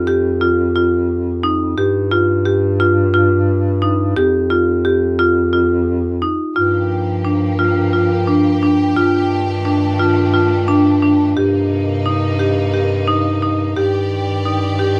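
Set in a straight, uneven 7/8, this pensive, restless piece of contemporary chamber music opens with a dusky, vibrato-laden bass clarinet holding down a jazz-inflected bass line, up front yet roomy, while a percussive marimba struck with hard mallets spins smooth arpeggios from 0.1 seconds. At 6.6 seconds a clear symphonic string section enters with lush, bowed sustained chords, their focused vibrato sitting softer behind the other two. Light reverb surrounds the trio as the harmony moves from Gm7 through F13/G and Cm7/G to Ebmaj7/G over a steady G in the bass, and the excerpt is cut from a longer work.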